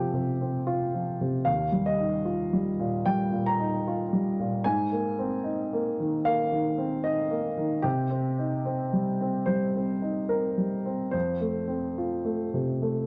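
A solo upright piano opens this wistful, reflective neoclassical minimalist fragment, its woody, polished tone sitting present and up front across a span from Eb2 to Bb5. In C minor at 74 BPM in 4/4, the playing moves with rubato and uneven beats through F, Ebadd9, Abadd9 and Cm before returning to F at 11.1 seconds. Light reverb and a dark, warm production frame the brief 13.1-second passage, which is cut from a longer piece.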